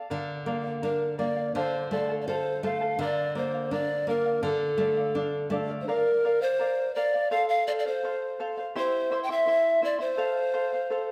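Heard through a moderate recital-hall reverb, this festive yet melancholic Andean folk piece moves at 84 BPM in 2/4, with an airy, wooden pan flute carrying the tongued, vibrato-laden melody up front from 0.8 s, a shimmering fingerpicked charango with double strings also up front, and a classical fingerpicked nylon-string guitar that accompanies until 5.9 s, all over chords built around Bb, F, Dm and C.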